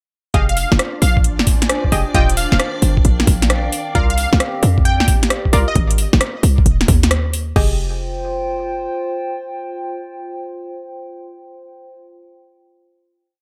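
UK garage in a two-step style, this bouncy, soulful piece moves at 133 BPM in F dorian with a heavy 16th-note swing, and its chords run from Fm9 through Ebmaj7, C7sus4 and Ab5 before settling back on Fm9. A gritty, pitched-down electronic kick and an overdriven house kit with a cracking snare, metallic hats, rim clicks and a crash drive the skipping two-step groove, and a tight, punchy 808-style bass sits up front with a syncopated line. Sparse, echoing chord stabs with a bright sawtooth pluck and chorus play throughout. A catchy, detuned unison lead with vibrato, delay and cassette-tape color plays short phrases high up, while a silky vintage string machine holds a soft high note in the background with a gently pumping motion. A warbling, lo-fi pad with a dark, nostalgic tone and its own reverb enters at 0.8 seconds and shifts slowly through the mix. After the drums drop away, the stabs and pad carry the final chord on to 11.9 seconds, and the whole mix stays dry and close.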